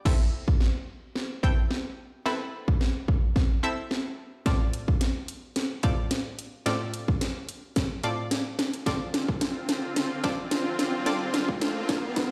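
Straight 4/4 house drums, with a punchy kick, cracking snare, hi-hat and crash, sit overdriven and up front in a bare stone room and drive this confident dance-pop build-up, cut from a longer piece, through a drum fill and a filter sweep, while a round, detuned analog pluck with chorus and sidechain pumping carries the minor-key chords; a lush, airy supersaw pad arrives at 8.9 seconds, and a background riser enters at 10.0 seconds.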